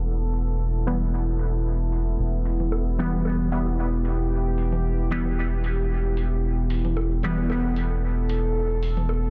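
Nocturnal and deep, this excerpt of dub techno moves at 113 BPM in 4/4 with a light swing on the sixteenths, resting on a single E minor chord throughout. A dark, moody pad of unison sawtooth and sine layers with a sub octave holds sustained chords from the start, its slow attack and long release softened by chorus and its own reverb. Beneath it, a soft, round sub bass sits up front on a low E for the full 9.3 seconds. A juicy, warbling polysynth plays resonant stabs from 0.9 to 7.7 seconds, its filter sweeping across the passage and coloured by chorus, phaser, cassette tape grit and dub echo. In the background, a tape-toned electronic hi-hat ticks through a low-pass filter, and overdriven congas and bongos join at 2.6 seconds with dub echo trailing them. The mix is dense and heavily limited, dry in overall space and dulled at the top by a low-pass filter.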